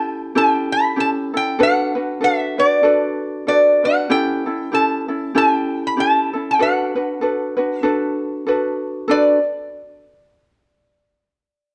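Hawaiian music in D major, dreamy and relaxed at 96 BPM with a gentle swing, where an up-front lap resonator guitar played with slide and fingerpicks sings the melody in a metallic, nasal voice while a light, fingerpicked acoustic ukulele, also close, accompanies over A7 and D6 chords, both playing from 0.0 to 9.4 s in a detailed recording with light reverb.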